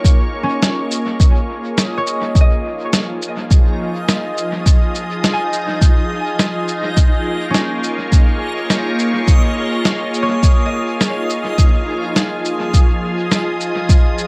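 A straight 104 BPM groove in 4/4, set by an up-front, tape-warm electronic kick and a muffled, pitched-down shaker and snare trailing dub echo, anchors this hazy, deep ambient dub fragment in Bb minor, where a detuned, organ-like sine pad holds sustained Bbm7 and Fm7 chords through ensemble chorus and reverb, a reversed, granular swelling texture drifts alongside, and a thumb-plucked concert harp rings out echoing arpeggios from 0.4 to 12.4 seconds.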